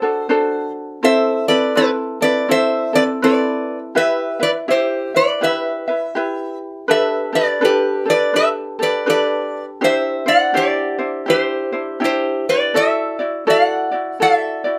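A sunny, languid Hawaiian excerpt in G major at 82 BPM with swung eighths, where an up-front metal-body resonator slide guitar, bright, nasal and metallic under fingerpicks, carries the melody over a mellow, lightly fingerpicked ukulele that sits just as close, both captured by detailed microphones in light reverb.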